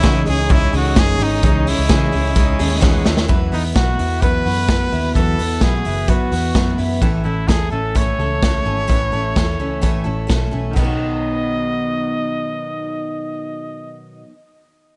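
Nostalgic and youthful, this jangly indie pop passage, cut from a longer piece, moves in a straight 4/4 with light reverb and a small-room ambience. A brilliant, present pop-style trumpet with vibrato carries the melody. Beneath it, a full-bodied picked dreadnought acoustic guitar rings out brightly, and a twangy, compressed twelve-string electric guitar plays clean arpeggios in the background. A reedy vintage combo organ with heavy vibrato sits behind the opening bars and adds a fill, alongside a drum fill, before the organ drops out at 3.3 seconds. A dark, round, foam-muted electric bass anchors the low end, while the raw garage kit sits up front, punchy and saturated, with a gritty, rolled-off top and a pumping room sound. The kit stops at 10.9 seconds, leaving trumpet, guitars and bass to carry the closing stretch over a B chord.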